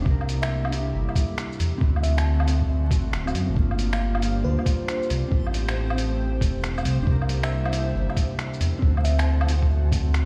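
A dark, detuned saw bass sits up front in this wistful, nocturnal future garage passage, its deep, rumbling tone thickened by tube saturation. It shares the weight with a thumpy, muffled kick drum, pitched down and overdriven, at a swung 137 BPM in 4/4. A lo-fi sampler-style kit adds finger snaps, hi-hat, shaker and woodblock, compressed and gritty, while a mellow, clean electric guitar carries the accompaniment through dub echo and sidechain pumping. An airy, breathy pad holds sustained chords in the background, its chorus and 12-bit sampler grit pumping along, as a bell-like FM electric piano plays a sparkling melody with chorus and delay from 0.4 seconds. At 4.3 seconds a reversed, dreamy granular texture enters softly on a single high note, carrying its own reverb. The chords cycle through C7, D7, Gm7 and Am7, and the whole mix sounds as though played on a big sound system in a bare stone room, with vinyl crackle over the top.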